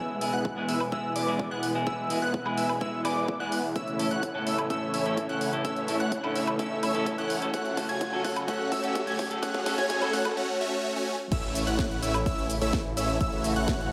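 Triumphant and uplifting, this festival progressive house excerpt runs at 127 BPM in a straight 4/4 in A major, moving through E, A and F#m before landing back on A. It opens as a build-up, with bright, huge supersaw chords up front playing the riff through a sweeping low-pass filter alongside a lush, nasal pad holding sustained chords with chorus. A punchy, catchy plucky lead spins high arpeggios with digital delay, while a clean, picked semi-hollow electric guitar adds accompaniment with spring reverb until 10.3 seconds. Underneath, a thick, menacing detuned saw bass sits very quiet, and a faint riser climbs between 4.4 and 10.4 seconds. A tape-warm house drum kit with a cracking snare, hi-hat, shaker, toms, woodblock and crash rolls through a long drum fill, and a punchy layered electronic kick drives the pulse, with the sidechain pumping on the supersaws, pad, lead and guitar. After a short break, the drop arrives at 11.3 seconds, all of it set in a wet recital-hall reverb.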